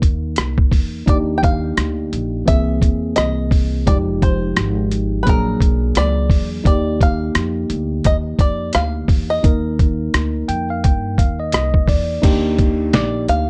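A dark, warm production with light reverb frames this relaxed, smooth jazz-hop excerpt, cut from a longer piece and moving at 86 BPM in 4/4 with a 60% swing on the sixteenths, in Eb major. Up front, a lo-fi sampler-style drum kit sounds compressed, pitched down and muffled, its thumpy kick and fat snare joined by hi-hat, rim click and crash cymbal. A pizzicato upright bass with steel strings gives a woody, dark, acoustic low end. A bright, clean tine electric piano played through a combo amp carries the accompaniment over Ebmaj7, C7alt, Fm9 and Bb7alt harmonies, and it breaks into a fill from 10.1 to 12.2 seconds. Above it, a twangy, percussive bluegrass banjo played with fingerpicks takes the melody, both it and the electric piano wrapped in plate reverb, as the piece turns to a new section at 12.2 seconds.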